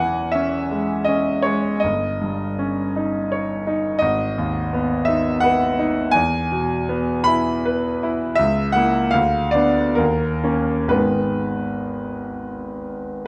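In a 3/4 with rubato, the tempo drifts between 62 and 86 BPM, giving this romantic nocturne for solo piano a breathing pulse. The mood is mournful and melancholic, set in G# minor, and the passage is cut from a longer piece, running about 13.3 seconds. A single grand piano carries everything, spanning G1 to B5 with a brilliant, smooth tone that has a vintage character, long sustain and an up-front presence. The harmony moves from C#m/E through D#7/G to G#m, then passes through E, A#dim/C#, Dm6 and D#5 before settling back on G#m. Close, detailed microphones capture the instrument within a moderate recital hall reverb, and a faint mains hum sits beneath the sound.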